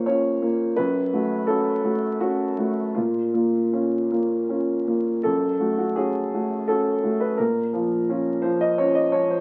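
A solo concert grand piano opens through the crackle of a very old 78 rpm record, setting a reflective, intimate tone in this neoclassical minimalist fragment cut from a longer piece. The piano sits up front with a boxy, deep-bass character and long sustain, spanning F#2 to D#5, while a moderate club reverb gives it a small, close room around it. In a triple metre with a free, rubato feel, the harmony moves between A#m and F#m chords. A single phrase is stated and then repeated from 5.2 seconds, so the two passages mirror each other. The aged surface noise and the piano's warm, lingering tone together give the music a hazy, remembered quality until it stops at 9.4 seconds.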